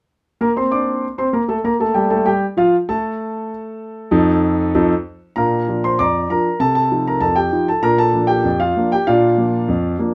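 A solo concert grand piano, deep in the bass with an open, long-sustaining tone and placed up front, plays a lively, playful ragtime passage in Bb major at 97 BPM in a straight 2/4, moving between Bb and F7 harmonies over roughly ten seconds cut from a longer piece, captured by close, detailed microphones in a dry room and tuned to A4 = 441 Hz.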